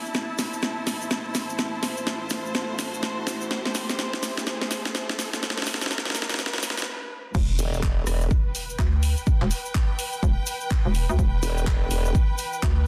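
Gritty and aggressive, this 125 BPM bass house excerpt in E minor builds for 7.3 seconds with a clear, lush string section, grainy cabasa, a layered house kit with a cracking snare, a background riser and impact, and a deep, moody ambient pad, before the drop at 7.3 seconds unleashes a punchy electronic kick, a hollow, bouncy FM bass and bursts of saturated, wobbling formant-sweep bass, all under a dense, heavily limited master.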